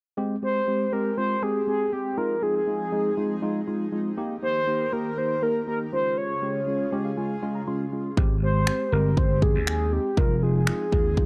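A straight 4/4 dance-pop groove carries this summery, upbeat fragment from a longer piece, set in a dry, close 1970s-style studio sound with digital ambience. From the start, a mellow tine electric piano lays down chords with a lush chorus and sidechain pumping, over an airy, breathy pad that swells in slowly and sustains with a detuned, full-bodied shimmer. A round, horn-like synth lead with a vintage warble, vibrato and a filter sweep sings the melody up front as the harmony moves from Abmaj7 to Fm7, Eb and Db. The electric piano plays a fill at 6.7 s before the music returns to Abmaj7. At 8.2 s a growly, amped slap bass and an electronic pop kit of finger snaps and a punchy kick drop in, adding a pumping low end.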